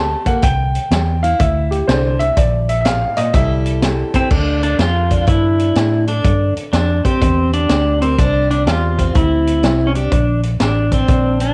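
A woody upright piano leads over bright, full-bodied dreadnought guitar and round, foam-muted electric bass, with a vintage kit of dark cymbals, a high-tuned snare and punchy kick joining at 0.3 s, in this dusty, heartbroken honky-tonk country passage, swung at 124 BPM in 4/4 and moving through C, Bbmaj7 and C6 into Dm, G5 and Bb, before a clean, compressed pedal steel with fingerpicked slide and volume swells takes the melody from 4.2 s, the piano, guitar and steel carrying a cassette-tape grain inside light reverb and a homespun studio ambience.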